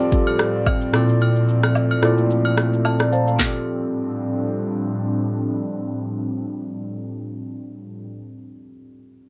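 Warm and relaxed, this amapiano excerpt moves at 110 BPM in F major with a swung sixteenth feel, built on a bright, bell-like tine electric piano that carries the chords through a phaser and low-pass filter and adds a fill from 2.6 to 3.4 seconds. An airy, breathy pad with a detuned, warbling vintage character sustains chords alongside it under chorus, while an electronic afro-pop kit with a deep kick, sharp snare, handclaps, rim click and shaker plays only until 3.5 seconds, its kick muted from 1.2 seconds during an opening filter sweep. Close acoustic agogo bells and woodblock add a light layer of percussion, all set in a small, wet room as the harmony moves between F69 and Bbmaj9#11.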